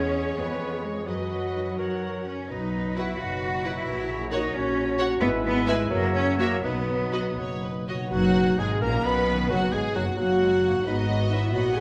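A distant, lush violin section carries the melody from the very start of this dramatic, restless romantic orchestral fragment in a rubato 6/8, with a second violin line, a very quiet mellow clarinet, a roomy oboe and a pure-toned small flute group (which drops out at 7.4 s) weaving around it, while a mellow bassoon, a very quiet viola section, tight background French horns holding sustained chords, ringing fingerpicked harp arpeggios, a smooth-topped cello section and a clear double bass section fill out the harmony and bass in a reverberant recital hall.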